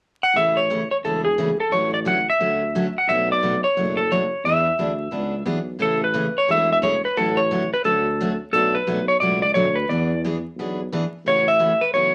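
Down-home and swinging, this western swing excerpt moves at 176 BPM in A major with a loose swung feel, cut from a longer piece. A clean, warm electric lap steel carries the slide melody up front from 0.2 seconds, over a mellow, soft-attacked, jazz-style tuba bass and a bright, full-bodied picked acoustic guitar picking chords such as Amaj7, Bm9 and E7. The moderate studio reverb and vinyl crackle lend the sound an old-record patina, with a second section arriving at 5.8 seconds and resolving on an A6.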